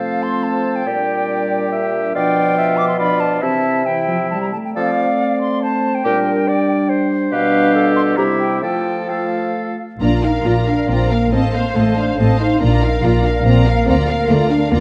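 A spirited, graceful classical-period orchestral movement in quick 3/4 with a rubato feel opens in F major on winds and horns alone, the airy silver flute, clear clarinet and oboe playing second lines over a warm bassoon and dark, soft-attacked French horn chords up front, until at 10.0 s the music turns to B-flat major as the bowed strings enter, an expressive, vibrato-rich violin melody carried over smooth background violins, violas and cellos and a lush double bass, all in a dark, reverberant scoring-stage sound.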